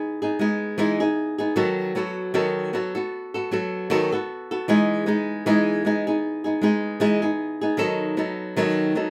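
A relaxed 77 BPM pulse in 4/4 carries a gentle 16th-note swing, giving this short pop fragment in E major an easy, carefree lilt. A single flamenco guitar plays alone for the full 9.1 seconds, fingerpicked and placed up front in the mix. Its acoustic tone is bright with the crisp sparkle of fresh strings, moving between D#3 and A4. The harmony rocks between Emaj7 and B7/D#, lending a sunny, open quality to the phrase. A light reverb adds a touch of air around the guitar, and the fragment reads as a slice lifted from a longer piece.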